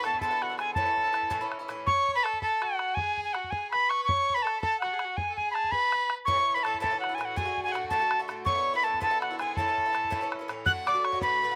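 Lively and rollicking, this Celtic jig excerpt moves at 109 BPM in 6/8 in A major. An airy, reedy metal whistle carries the melody up front, tongued with a chiff and vibrato, over a rich, earthy bowed fiddle on the second line and a tight, damped bodhran, close and dry. A metallic, double-strung Irish bouzouki picks the accompaniment, dropping out at 1.9 seconds and returning at 6.3 seconds. Slapback echo touches the whistle, fiddle and bouzouki, while the outdoor recording carries little reverb or room sound.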